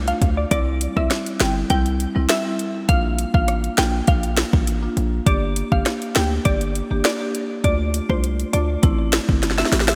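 A straight 4/4 dancehall groove rides on an up-front electronic afro-pop kit, with a deep kick, sharp snare, rim click and metallic hi-hats, closing on a drum fill at 9.4 seconds. Beneath it a heavy, punchy 808-style bass with a sine body and noise layer hits hard, while a woody marimba on rosewood bars pumps with sidechain under a glassy, crystalline wavetable pluck that carries the melody through chorus and delay. The mood is sultry and hypnotic, the chords moving from Dm through C, Bb and Gm, with a bright 1980s-style digital sheen and light reverb on this section cut from a longer piece.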